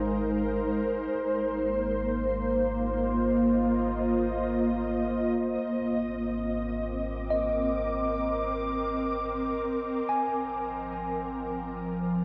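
Peaceful and serene, this ambient excerpt drifts at a slow 54 BPM in a straight 4/4, cut from a longer piece. An ethereal, airy pad of detuned sawtooth and triangle voices sits up front, holding sustained chords with a slow attack, long release and ensemble chorus while a filter sweep moves across it. A bright, clean tine electric piano spins high arpeggios through a diffuse ambient delay, fading in across the full 12.2 seconds. Beneath them, a deep, round sine sub bass holds a single low note and fades out over the same span. The harmony rests on Abadd9 before shifting to Fm7/Ab at 5.6 seconds, all bathed in a cathedral reverb and the worn, warbling pitch drift of old cassette tape, with an overall fade-out beginning at 7.1 seconds.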